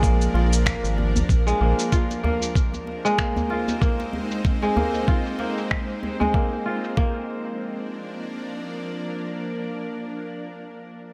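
Peaceful organic downtempo at 95 BPM in Bb mixolydian, with a swung 16th feel, where a bright, ringing kora plays filtered arpeggios with sampler grit and digital delay over a tense, string-like drone carrying reverb and sidechain pumping, a round, dark analog bass that stops at 1.7 s, a thumpy, up-front electronic kick, gritty cabasa and finger snaps, and a deep acoustic djembe, all moving between Bb and Ab chords in this short cut from a longer piece.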